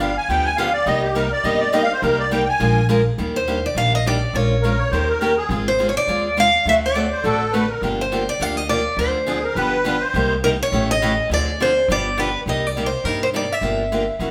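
A wet, large studio reverb surrounds this band playing live in one room, giving a short cut from a longer piece of acoustic string swing in the jazz manouche style a roomy sound. At 207 BPM in 4/4 with a swung eighth-note feel, the music in C minor feels bittersweet yet swinging, moving through changes such as Cm7, Ebmaj7, Ab6, Dm7b5 and G7. A close-miked, reedy musette accordion with a shimmering tuning opens with a solo passage up front, then carries on as a second line until 10.3 seconds. Underneath, a boxy parlour steel-string guitar picks the accompaniment while a woody, thumpy pizzicato upright bass holds down the low end. From 3.4 seconds a second picked parlour guitar, bright with fresh strings and placed up front, takes the melody through to the end.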